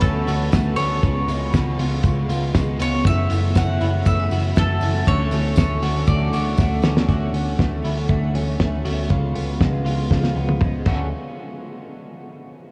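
A dreamy, reverb-soaked mix with cassette-tape character and a hint of small-room ambience gives this short excerpt of jangly indie pop a nostalgic, breezy haze. At a straight 119 BPM in D major, the music moves through Dmaj7, C#7 and F#m7 over a cloth-damped, thuddy drum kit sitting up front, its fat snare, tight kick and dark cymbals coloured by a gritty vintage sampler sheen. A round, foam-muted electric bass holds the low end just as prominently. A bright, double-strung bowl-back mandolin carries the melody through a diffuse ambient delay until 6.5 seconds, with a faint, jingly tambourine close behind. Underneath, a full-bodied fingerpicked steel-string acoustic guitar with fresh strings and audible finger squeak rests in the background under an analog chorus. A twangy, compressed clean electric guitar spins arpeggios through lush chorus and delay until 11.1 seconds, the drums adding fills as each passage turns.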